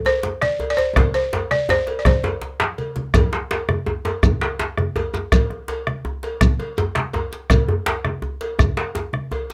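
Set in 12/8 at 110 BPM counted in dotted quarters, this driving, earthy West African drum ensemble excerpt moves with a straight feel. A woody, buzzing balafon played with rubber mallets sits up front and carries a short melody between C5 and D5, stopping at 2.7 seconds. Beneath it, two djembes with tight, cracking tones drive the groove, one vintage and band-limited and placed up front, the other struck with hard hands and heard in a small room. The deep, dark bombo anchors the bottom close and forward, while low-tuned congas with a thick-skinned, warm sound add body, and a metallic cowbell rings from a distant, large room. A drum fill runs from 1.0 to 3.1 seconds, and at 3.1 seconds a grainy, mellow shekere enters close and dry as the second section begins. Close, detailed miking with light reverb keeps each hand stroke clear.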